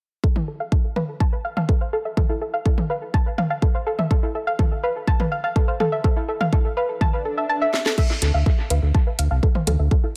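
A soft, round pluck spins mellow arpeggios over an Esus4 chord from 0.2 seconds, filter-swept, chorused and pumping with tape echo, as a punchy electronic kick and a house kit of cracking snare, metallic hats, crash and toms drive this hypnotic, dark melodic techno excerpt at 124 BPM, a background swell and a drum fill at 7.7 seconds lead into a Dm passage where a deep, round analog bass enters at 8.2 seconds, all set in an echo-heavy digital ambience.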